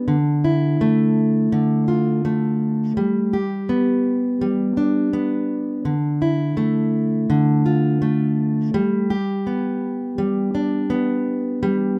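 Wistful, tender pop at 83 BPM in a straight 4/4, carried by a lone plugged-in steel-string acoustic guitar fingerpicked between D3 and G4, tuned to A4 = 441 Hz. The full-bodied jumbo tone sits up front as the guitar moves between Dmadd9 and G, changing at 3.0, 5.9 and 8.7 seconds. A moderate studio reverb frames this 12-second excerpt from a longer piece, which has the rough feel of a home demo mix.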